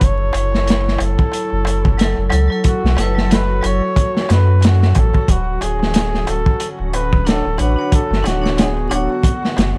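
Trip hop in F# minor at 91 BPM, this melancholic, smoky clip from a longer piece rides a swung 4/4 groove under a dark production with vinyl crackle and a small room's reverb. A bucket-muted trumpet carries the melody from the start, its veiled, breathy, whispered tone with vibrato drifting through tape echo in an intimate solo voice. Beneath it, a crunchy breakbeat kit of kick, snare and hi-hat sits up front with a saturated, gritty, rolled-off character, joined by a round sine sub bass and a very quiet, crisp metal-shell darbuka played with hard hands. A warbling, detuned, lo-fi pad holds sustained chords in the background through chorus, moving from F#m7 to Dmaj7 at 5.3 seconds. A hard-mallet vibraphone enters at 2.0 seconds with a metallic, ringing tone, slow motor vibrato, tremolo and tape echo, and a reversed, granular texture adds a dreamy, very quiet layer from 3.4 seconds.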